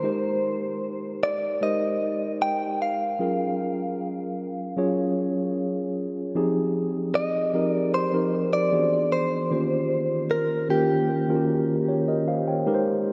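R&B with a sensual, longing mood, this short cut from a longer piece sets a mellow tine electric piano up front playing lush extended chords, alongside a bright, picked, compressed clean electric guitar carrying the melody through a diffuse ambient delay. The whole mix is soaked in a huge, dreamy reverb, and the harmony shifts into a new section at 6.3 seconds. The guitar stops at 11.4 seconds, leaving the electric piano alone until 13.1 seconds.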